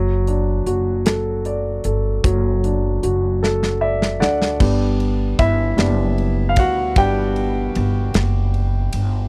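A dry, close 1970s-style studio sound frames this heartfelt, romantic six-eight pop ballad in G major at 51 BPM, cut from a longer piece, where a polished, present grand piano accompanies a woody, growly pizzicato upright bass and an acoustic drum kit with a tight kick and medium-tuned snare, before piano and drums share a fill at 3.4 seconds and the piano takes a solo from 4.6 seconds as the harmony moves from D/F# to G.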